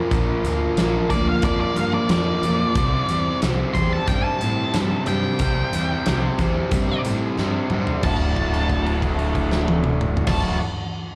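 A straight, driving 4/4 groove from a big, fat-snared rock kit with a punchy kick anchors this raunchy blues rock and southern rock excerpt, heard as a live club gig through the venue's PA, where a biting, double-tracked overdriven guitar riff with spring reverb and slapback echo sits up front over a growly fuzz bass, a dark octave-fuzz lead guitar with slapback echo enters at 1.1 s, and after a drum fill the music shifts from Bb and C to D at 8.0 s, where a note is held until 10.3 s.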